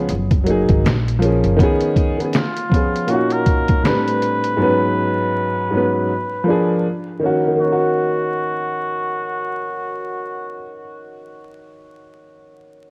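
A cup-muted trumpet carries the melody in this hazy, melancholic lo-fi hip hop clip, entering at 2.4 seconds with a soft, veiled jazz tone, scooped notes and a dulled, filtered edge. Beneath it, an intimate upright piano plays the accompaniment throughout, woody and smooth with audible action noise and a vintage cassette softness. A pizzicato upright bass adds a brief acoustic pulse at the start before stopping at 1.6 seconds. The sampler-style drum kit, with finger snaps, hi-hat, a thumpy kick and a fat snare, sounds compressed, pitched down and overdriven with gritty 12-bit character until it drops out at 4.6 seconds. Minor-seventh, ninth and eleventh chords drift under a swung 16th-note feel, and the whole recording is coated in worn, warbling tape, vinyl crackle and light studio reverb.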